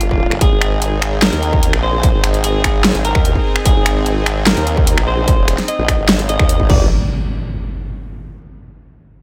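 A half-time 4/4 pulse at 148 BPM drives this heavy, chaotic wobble dubstep passage cut from a longer piece, where a distorted, tape-warm electronic kick and an up-front kit of huge snare, bright hi-hats, crash and finger snaps pound beneath a compressed sawtooth formant-sweep wobble bass with chorus and overdrive, while a picked, clean electric guitar melody with subtle chorus and digital delay rides over a lush, detuned supersaw pad pumping in the background, until the drums stop at 6.8 seconds just after an electronic impact lands at 6.7 seconds in the dry mix.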